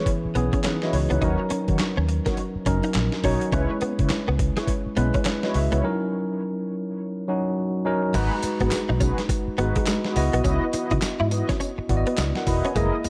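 A dark, warm mix with light reverb frames this short cut from a longer new jack swing R&B piece, moving at 104 BPM in 4/4 with a swung sixteenth-note feel that comes across punchy and slick. Up front, a tine electric piano carries the accompaniment with a clean tone through its built-in speakers. Beside it sits a gritty, compressed sampler-style drum kit, pitched down and overdriven, with a thumpy kick, a medium-tuned snare, hi-hat, handclaps, tambourine and crash cymbal. The bass is a vintage fingered electric, foam-muted, round and amped, entering at 0.3 seconds. A mellow synth brass patch adds sawtooth and square-wave stabs with a sub octave, filter sweep, vibrato, chorus and tape echo. A picked, direct-recorded guitar plays a compressed riff colored by ensemble chorus. The harmony moves between C#m7 and D#m7, with a break from 5.8 seconds before a new section opens at 8.1 seconds on G#m7 and settles onto C#m11.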